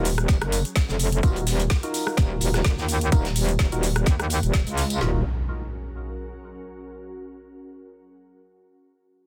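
A swung 4/4 groove drives this bouncy, swaggering bass house excerpt, with an up-front electronic garage kit punching out a tight kick and woody snare, layered with a second garage kit adding cabasa, rim click and metallic hats, and a quieter acoustic kit of high-tuned snare, hi-hat and tambourine sitting in the background of a studio room. Underneath, a metallic, aggressive FM wobble bass carries the low end, saturated and compressed with overdrive, chorus and sidechain pumping. Dark, hollow, organ-like stabs hit percussively and decay, colored by analog chorus, cassette tape grit, digital delay and their own sidechain pumping over an Ebmadd9 chord. A very quiet, ethereal pad of detuned unison voices drifts in at 0.7 seconds with a slow attack, ensemble chorus and built-in reverb. The drums drop out between 5.0 and 5.1 seconds, just as an up-front electronic impact lands at 5.0 seconds, and the pad lingers until 6.9 seconds, all within a dense, heavily limited modern master.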